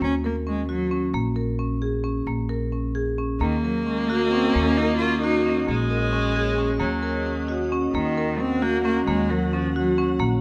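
A warm, bowed cello carries the melody up front, its soft attack, vibrato and portamento lending an expressive voice to this restless, pensive chamber piece in 5/8, cut from a longer piece. Alongside it, a marimba struck with medium-hard mallets plays continuous arpeggios, also up front, while a dark, woody upright bass sounds thumpy plucked notes on gut strings throughout. At 3.4 seconds a clear, intense viola joins with a smooth-topped second line, and from 4.1 seconds a glassy, ethereal FM pad enters with a slow attack in the background, its sustained, mellow chords softened by ensemble chorus and built-in reverb. The cello's phrases come in short spans, returning at 7.9 seconds for a new section as the viola falls silent. The harmony moves between Ebm7 and Bbm7, and the close, detailed sound sits in light reverb.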